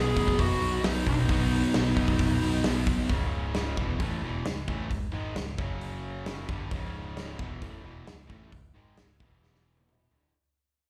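Hard rock at 133 BPM in C# minor, menacing and heavy, heard as a live gig through a club PA with small room reverb. A dark, lo-fi lead guitar through a small cranked amp plays a short overdriven melody with slapback echo and analog delay for the first 2.6 seconds, while a scooped, double-tracked high-gain guitar adds distorted riffing in the background until the fade-out begins at 3.1 seconds. Crunchy and bright overdriven guitars carry the slapback-echoed riff over a growly, punchy picked bass and a big, up-front rock kit with a tight kick and medium-tuned snare, which closes on a drum fill at 9.4 seconds.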